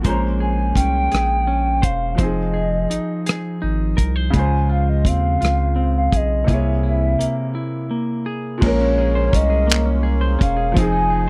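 Sultry and yearning, this slow R&B fragment in 6/8 moves at 56 BPM with a straight feel, cut from a longer piece and captured in a dry, close 1970s-style studio sound. A hollow, woody clarinet-like synth lead carries the melody from 0.1 seconds, its soft attack and vibrato colored by chorus and a slapback echo. Underneath, a round, deep analog bass and a soul drum kit with dark cymbals, a tight kick, handclaps, hi-hat and rim clicks sit up front. A clean, compressed semi-hollow electric guitar plays a second line while a clear, boxy grand piano with short sustain fills in the accompaniment over Bbm9, Fm7, Dbmaj7 and a tense C7b9b13. After a break at 7.6 seconds, a reedy, breathing hand-pumped harmonium enters at 8.6 seconds with sustained chords in the background as the progression returns to Bbm9 and Fm7.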